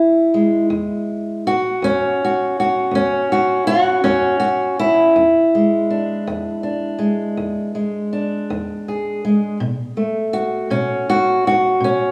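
A large studio reverb gives this short excerpt of acoustic country blues a wet, roomy sound, with the feel of players captured live in one space. A fingerpicked old ladder-braced acoustic guitar plays solo and up front, its old strings giving a dark, woody, boxy tone as it rolls through a rollicking, swaggering 12/8 groove. The guitar sits on an E7 chord before moving to B5 at 9.6 seconds, and the excerpt ends at 12.1 seconds.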